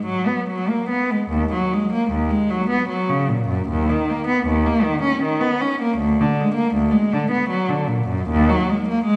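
Classical, baroque-style suite movement for unaccompanied cello in Eb minor, moving at an unhurried 77 BPM in 3/4 with uneven beats and a flowing, introspective rubato. A single bowed cello with a rich, up-front tone plays solo from the opening through 9.2 seconds, ranging from D2 to C#4 with expressive vibrato and portamento. The recording sits in a wet recital-hall reverb suggesting a church or concert hall, and the passage is cut from a longer piece.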